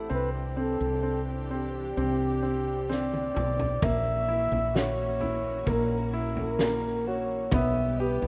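Pop ballad at a slow 65 BPM, heartbroken and melancholic, where a breathy, whispered flugelhorn carries the melody over bright grand piano, a lush bowed string section, and a round, woody fretless bass with subtle chorus, until a loose indie drum kit with a fat snare enters on a fill at 2.9 seconds, all washed in a lush hall reverb within a rough home-demo mix, moving from Cadd9 to F#7/A# to Em/B.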